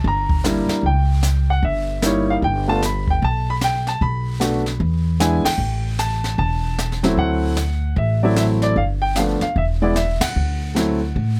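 A lively swing in 4/4 drives this short cut from a longer jazz piano trio performance, its eighth notes carrying a gentle lilt that gives the music a swinging, sophisticated mood. The warm grand piano carries the melody from start to finish, sounding present and polished up front in the mix. The upright bass, plucked, woody and warm on steel strings, sits equally forward and anchors the low end throughout. Played with brushes, the drum kit sits a little further back, pairing a high-tuned snare with a boomy kick and an airy studio-room sheen across the hi-hat and ride cymbal. The harmony moves through a chain of chords, many of them dominants, with a brief pause in the changes near the end, and the whole trio hits accents together at 5.4 and 10.2 seconds. Close, detailed miking and very little reverb keep the sound intimate and immediate.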